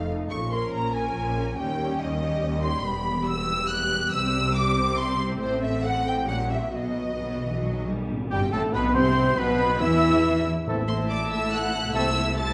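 A fast triple metre pushed and pulled by rubato drives this dramatic, restless romantic orchestral fragment. A lush, expressive violin section carries the melody over a second violin line, a distant silver flute, soft-attack violas with portamento, a tight mellow horn section holding chords, and rich, even cellos and double basses. Dark cymbals and tam-tam sound very quietly from 5.4 seconds and hard-mallet timpani on calf heads fill in before a band accent at 8.1 seconds. Just after, at 8.3 seconds, a clear oboe, a present trombone section sustaining chords and a roomy trumpet playing stabs join, all within a wet scoring-stage reverb as the harmony moves from Bbm through A#dim7 and B to settle on Am.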